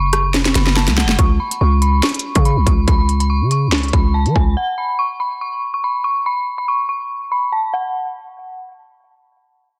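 A half-time drill groove drives this menacing, dark hip hop excerpt, with an overdriven electronic kit of hard-clipped kick, sharp snare, crisp hats and rim clicks sitting up front beside a growling, buzzy 808-style bass, and a drum fill arriving early on. Above them an eerie, inharmonic synth bell carries the melody, its detuned FM tone softened by chorus, phaser, low-pass filtering and tape echo into a mellow, lingering shimmer. Drums and bass cut out around 4.6 seconds, leaving the bell to ring alone in light digital ambience within a dense, heavily limited modern master until 7.9 seconds.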